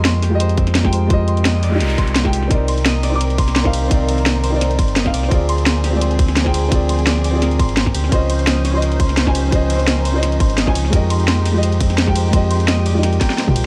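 Lush and dreamy, this short cut from a longer liquid drum and bass piece runs at 171 BPM with a light swing, as a dark, mellow, boxy grand piano and a bright, ringing concert harp playing arpeggios, both carrying dub echo, float over a deep, full sine sub bass with octave, chords moving from Fm9 through Cm9, Dm7b5 and Dbmaj9. A layered, up-front kit with a cracking snare, hi-hat, ride and toms drives alongside a tight electronic kick that enters at 0.6 seconds, while a background noise sweep sounds at 1.6 seconds. From 2.5 seconds a distant, woody symphonic string section adds sustained chords with vibrato and sidechain pumping, and a drum fill closes the passage at 13.2 seconds in a dry, close sound.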